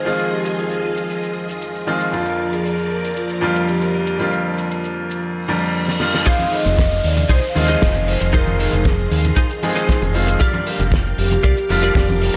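A straight nu-disco groove in 4/4 sets a groovy, sensual mood, opening on a damped 70s drum kit with dark cymbals and a fat snare while a filter sweep runs over it. Soft-mallet vibraphone carries the melody with a mellow, ringing tone and tape echo, over up-front, brilliant concert grand piano chords that pump with the sidechain and trail a delay, while a lush vintage string machine sustains chords in the background, moving between Fm7 and Gm7/F. A reverse cymbal and downlifter enter at 5.5 s, and a drum fill leads into the drop at 6.3 s. There a tight, dry kick, a clean, picked electric guitar riff with chorus and delay, and saturated maracas and congas join, followed at 6.7 s by a fingered electric bass with an envelope filter sitting up front. The dreamy mix is soaked in plate reverb, and this cut is taken from a longer piece.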